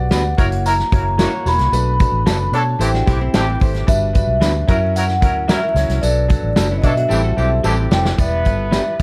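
A mellow vibraphone played with soft mallets carries the melody, its metallic, ringing tone shimmering with a slow motor vibrato and bathed in plate reverb. This is an uptempo, danceable 1960s-style soul excerpt in a straight 4/4, its chords moving through F#7, Bm7, Am7 and Gmaj7 before settling on Em7 at 8.2 seconds. Beneath it, a round, foam-muted fingered electric bass sits punchy and up front, while a natural country drum kit with a tight kick and medium-tuned snare drives the groove and a jingly tambourine sits distant in the background. A clear, slightly boxy baby grand piano supplies accompaniment, an electric guitar through a small old amp adds slightly broken-up, lo-fi stabs, and a tight horn section with light vibrato plays a second line from 0.4 seconds. A dark, clean hollow-body jazz guitar slips in with a background riff from 2.9 seconds, and the drums play a fill from 7.1 seconds. 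Light reverb and vinyl crackle give the whole a vintage patina.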